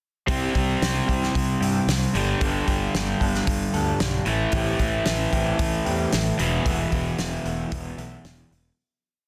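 A straight 4/4 pulse at 113 BPM drives this brief, brooding and angsty piece of quiet-loud alternative rock, tuned to A4 = 439 Hz. A loose acoustic indie drum kit sits up front with a punchy kick, fat snare and hi-hat in a pumping studio room, laying down a big rock groove, while a growly fuzz bass adds overdrive and drives steady eighth notes underneath. A crunchy overdriven guitar rings out bright chords on its riff, close and forward in the mix, and deep in the background a dark, lo-fi guitar through a small old amp picks slightly broken-up, short syncopated chords shimmering with harmonic tremolo. The single verse moves through C, Gadd9, Am7 and Esus4 before a fade-out from 6.7 to 8.8 seconds. Light reverb and a small room ambience surround the band, and the master is dense and heavily limited.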